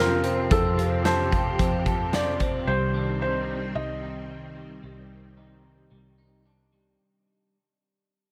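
This dream pop excerpt drifts at 111 BPM in a straight 4/4 with a floating, blissful mood, moving from F to Cmadd9 at 2.7 seconds while the whole passage fades out. A felt-muted upright piano carries the melody, its soft, mellow tone touched with delay and the intimate click of audible action noise. Beneath it, a silky vintage string machine holds slow-attack chords through ensemble chorus, and an electric guitar on the edge of break-up picks compressed arpeggios through analog chorus and delay. A vintage foam-muted bass sits dark and round in the low end. A huge arena drum kit, acoustic and natural with a punchy kick and medium-tuned snare, plays from 0.2 to 2.5 seconds, while a very quiet FM synth bell adds a pure, decaying shimmer with chorus and phaser, all set in light reverb and studio ambience.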